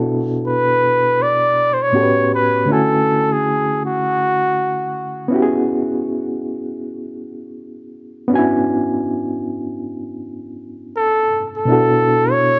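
A gritty, reedy electric piano with fast tremolo and plate reverb opens this smooth, sultry R&B fragment at 80 BPM with a swung sixteenth-note feel, sitting up front as if through a combo amp and moving from Bm7 through A13 and Dmaj9 to C#m7. A warm flugelhorn enters at 0.5 seconds with a jazz-style solo line full of scooped notes and light vibrato, also up front with plate reverb, falls silent at 5.3 seconds while the piano carries on, and returns at 11.0 seconds, shortly before the harmony comes back to Bm7 at 11.7 seconds. A moderate studio room surrounds the pair.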